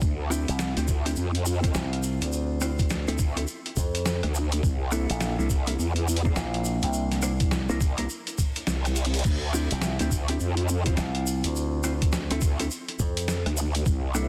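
A growling, detuned growl bass opens this gritty, funky glitch hop piece alongside a thumpy, pitched-down electronic kick drum and a grainy tube shaker, soon joined by dark, clean mellow electric guitar stabs with sidechain pumping, a low-pass filter and digital delay, a tape-warm boom bap sampler-style kit of snare, hi-hat, rim click and crash, and a bright, punchy slap bass with an envelope filter, all over swung 16ths and Dm11, C13 and Dm9 chords, while a reverse cymbal sounds faintly in the background from 8.4 seconds before a drum fill at 9.0 seconds, in a dense, heavily limited modern mix with light reverb.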